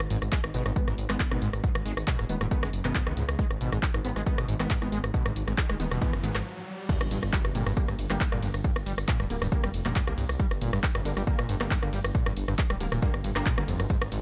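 A menacing, beating detuned saw bass and a dry, overdriven analog drum machine of hi-hats, handclaps, rim clicks, tambourine, ride and crash open this dark, intense peak-time techno excerpt, pumping against a punchy up-front electronic kick while a squelchy, distorted acid bass riff with lush chorus and dub echo and bright, wave-folded rave stabs sit in the background, until a riser builds from 5.4 seconds, a brief stop falls at 6.5 and the drop lands at 6.9 with an impact as the harmony moves from Abm to Gm.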